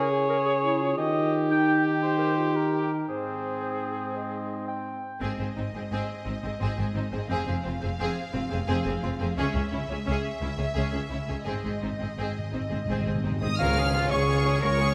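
A heroic, adventurous cinematic film-score passage in Ab major at 115 BPM in a straight 12/8, opening with up-front clear trumpet stabs over a dark, tight trombone section while mellow cor anglais and a distant clarinet weave second lines, then handing over at 5.2 s to lush, vibrato-rich bowed strings led by warm violins over bright cellos and rich double basses, with a close, dry timpani fill from 11.5 s leading to a band accent at 13.6 s; the trumpet returns just before it, and a soft-edged tuba and a background tam-tam enter at the accent, all bathed in a wet scoring-stage reverb.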